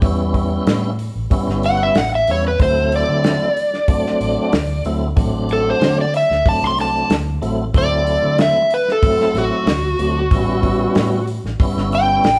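A moderate large-studio reverb gives this live-in-one-room cut of rollicking, soulful straight-eighth soul blues at 93 BPM a roomy glow, with the dry, dark drum kit (tight kick, medium-tuned snare, hi-hat) and the overdriven slide guitar sitting up front. A full tonewheel organ, lightly overdriven through a slow rotary speaker with chorus vibrato, and a round, foam-muted fingered electric bass carry the groove over A9 and D9 chords. The gritty slide guitar enters at 1.7 s and takes a solo for the rest of the excerpt.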